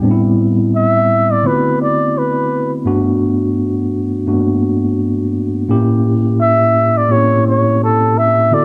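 Soul at 85 BPM in 4/4, this short, romantic excerpt cut from a longer piece sways with a gentle 16th-note swing and is tuned to A4 = 442 Hz. A mellow, clean tine electric piano opens at 0.0 seconds, heard through its built-in speakers and placed up front, laying down chords that move from Am9 to D13, Gmaj7 and then A7b9. At 0.8 seconds a breathy flugelhorn enters as the solo melody voice, up front and intimate, with a whispered, pop-style delivery, a soft attack, light vibrato and a smooth top. Both parts sit at the same level and play through to 8.6 seconds, framed by a moderate echo-chamber reverb and small-room ambience that give the sound a close, cozy glow.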